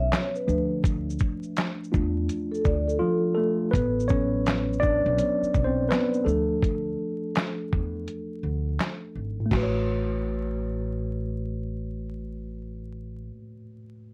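Lo-fi hip hop at 83 BPM in A major with a swung 16th-note feel, this mellow, dreamy excerpt features a worn, slightly out-of-tune tine electric piano up front, soloing through the first 9.5 seconds and later treated to a filter sweep, alongside a smooth, dark soft-mallet vibraphone with tape echo that stops at 3.7 seconds, a woody, growly pizzicato upright bass, and a gritty, compressed sampler-style soul drum kit with a thumpy kick, handclaps, shaker and crash that drops out briefly and then stops at 9.7 seconds, all steeped in warbling cassette tape, vinyl crackle and modest studio ambience.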